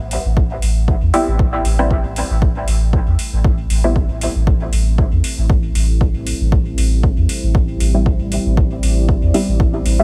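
A muted, detuned sawtooth chord stab, shaped by a filter sweep and soaked in dub echo, chorus, phaser and sidechain pumping, sounds from 1.1 to 4.0 seconds and returns at 7.9 seconds in this cavernous, hazy dub techno excerpt at 117 BPM in A minor, resting on an Am7 chord. A round, mellow sine sub bass, also pumping, holds the low end throughout, joined by a punchy, layered kick and dry, overdriven metallic hi-hats with a light swing on the sixteenths. Shortly after the opening, a dark, warbling vintage pad with slow attack, chorus and its own reverb drifts in quietly beneath, pumping too, while the overall mix stays dry and echo-heavy.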